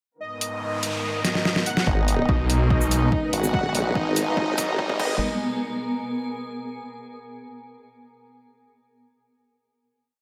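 Chaotic and heavy, this complete piece of heavy wobble dubstep moves at 144 BPM in a half-time 4/4 feel and sits in G# minor, opening on a G#madd9 chord. A smooth, detuned supersaw plays a repeating riff melody in octaves with vintage 12-bit sampler grit and tape echo. Beneath it, a dark, woody studio string section holds lush sustained chords in the background, pumped by sidechain and filtered, while a noise sweep and riser supply transition effects. A cloudy, blurred granular pad with its own reverb carries slowly shifting chords and outlasts the rest, lingering through the final note to about 6.8 seconds. The overdriven drum kit brings a deep snare, bright hats, shaker and crash, with fills in the intro and late in the build. At 1.9 seconds a punchy electronic kick and a saturated formant-sweep wobble bass with chorus arrive, modulating its phrases at changing wobble speeds, and a snarling, growling distorted saw bass joins up front at 2.3 seconds with chopped, answering phrases as the build climbs.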